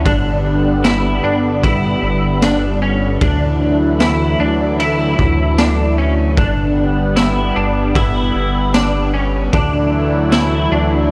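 Floating and ethereal, this dream pop excerpt moves at 76 BPM in G lydian, alternating G and Dadd9 chords within a gritty, cassette-tinged small room. A smooth, detuned analog pad holds sustained chords with chorus, while an up-front semi-hollow electric guitar plays clean, picked arpeggios through ensemble chorus and analog delay, and a glossy chorused synth bass with a pulse-wave tone, filter pluck and transformer saturation sits beneath. A raw garage drum kit with boomy kick, medium-tuned snare, ride cymbal and tambourine enters at 0.1 seconds, its saturated, rolled-off top adding vintage grain.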